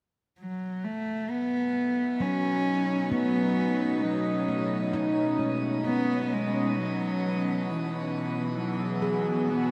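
A slow, straight 3/4 pulse at 66 BPM sets an unhurried sway for this luminous ambient excerpt in B mixolydian. A dark, intimate cello enters at 0.4 seconds with the melody, bowed sul tasto by a single player with soft attacks, vibrato and a smooth top, sitting up front in a diffuse ambient delay. Soon after, an evolving wavetable pad unfolds sustained chords from slow attacks, its morphing, detuned unison tones mellowed by chorus and its own reverb. At 2.2 seconds a handpan joins in the background with ringing, meditative arpeggios played with the fingertips, its stainless steel tone warm, dark and smooth beneath a matching delay. The harmony rests on B7 before shifting to Eadd9/B at 5.8 seconds, and a wet shimmer reverb with an 8.7-second tail bathes the whole in a glowing haze.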